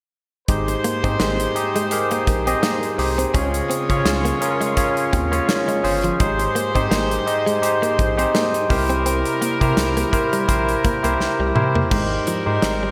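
Nostalgic and uplifting, this short cut from a longer 1980s-style pop piece moves at an easy pace with a light swing on the sixteenths, its chords shifting from Abmaj7 through Db and C7 before landing back on Abmaj7 at 11.9 seconds. A barky tine electric piano sits up front carrying the accompaniment, its bright, clean tone coming through a combo amp and bathed in shimmer reverb. A clear horn section with light vibrato and a smooth top punctuates with stabs through digital delay and shimmer, while a rubbery, hollow square bass bounces underneath with a dark, saturated filter pluck. The modern studio drum kit hits with a punchy kick, medium-tuned snare and bright cymbals under gated reverb, rolling through a drum fill from 11.2 to 11.9 seconds. Entering at 0.7 seconds, a direct-recorded clean electric guitar picks a compressed riff in the background, colored by analog chorus, delay and shimmer, and the whole mix sits in a lush hall with glossy digital sheen.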